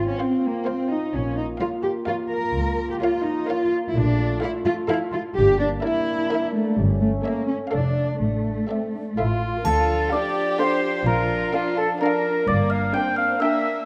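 In a straight 3/4 at 128 BPM, this sneaky, mischievous film cue opens with up-front, woody cellos and dark double basses under distant French horn chords, while violins play softly over a viola accompaniment, all bowed sul tasto with vibrato in an intimate chamber blend. The harmony drifts through Bb minor before settling into D minor from 3.9 s. At 9.2 s the playful side arrives: a dry xylophone with soft rubber mallets takes the melody while a clear clarinet and oboe and an airy, hollow flute ensemble weave a second line beneath it. A background triangle adds a brief sparkle at 9.6 s, and the whole passage sits in a dark, moderately reverberant scoring-stage space.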